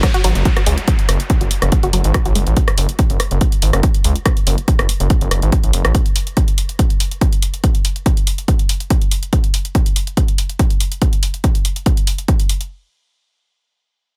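A gritty, aggressive synth bass sits up front in this driving peak-time techno excerpt, its nasal, wave-folded and saturated tone pumping against the sidechain from 0.2 until it drops out at 5.9 seconds. Alongside it, a heavy, layered electronic kick drum with a tape-warmed, small-room character anchors the relentless, hypnotic straight pulse. A techno drum kit of warm hi-hats and rim clicks fills out the groove, with pumping on the hats and cymbals. In the background, a lush, punchy unison pluck plays a bright, detuned riff through phaser, tube saturation and delay, heard only during the opening seconds. A filter sweep moves across the synth arpeggio in the same stretch while an electronic downlifter falls away, all set in a digital ambience.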